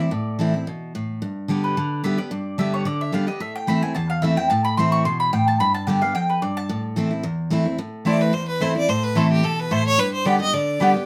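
A moderate studio ambience surrounds an up-front acoustic trio in this driving, lonesome bluegrass fragment taken from a longer piece, with a swung eighth-note feel. A full-bodied dreadnought steel-string guitar carries the picked accompaniment from the low register up through the middle, while the double-strung mandolin, round and warm in tone, plays stabs and takes a solo for the opening 7.8 seconds. The harmony moves between A minor and G throughout. At 8.1 seconds, just after the music shifts into a new section, a single bowed fiddle enters with the melody, its focused, clear tone touched with light vibrato. The guitar continues to the cut at 11.1 seconds, with the mandolin dropping out just before.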